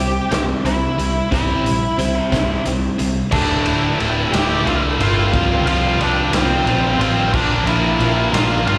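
A slow 6/8 sway at 60 BPM, counted in dotted quarters, carries this brooding, angsty quiet-loud alternative rock passage in D minor, cut from a longer piece. A dark octave-fuzz lead guitar sings the melody throughout, dressed in plate reverb, slapback echo and analog delay. Beneath it, a tight, bright distorted guitar plays a riff with its own slapback, and a round, foam-muted vintage fingered bass anchors the low end. A twangy, compressed twelve-string electric guitar picks chorused arpeggios until 3.1 seconds, while the raw garage drum kit enters at 0.3 seconds with a punchy kick, medium-tuned snare, hi-hat, ride and crash in a stone-room sound with a rolled-off top. At 3.3 seconds a thick fuzz guitar joins the riff from the background as the harmony moves from C to Dmadd9, Fsus2/C and Bb. The recording sounds like a live gig heard through the venue's PA, with light club reverb.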